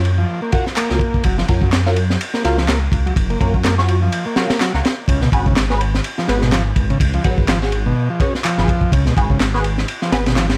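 Playful and energetic, this breakbeat excerpt at 125 BPM in Db mixolydian swings its 16ths over a crunchy, punchy acoustic drum kit with dark cymbals and a high-tuned snare, a deep, rumbling detuned saw bass with tube saturation, a mellow overdriven combo organ riff with light vibrato and delay entering at 0.2 seconds, background electronic handclaps with overdrive from 0.8 seconds, and nasal band-passed chord stabs with phaser, chorus and delay, all moving from Gbmaj7 to Db7sus4 amid small room ambience and vinyl crackle.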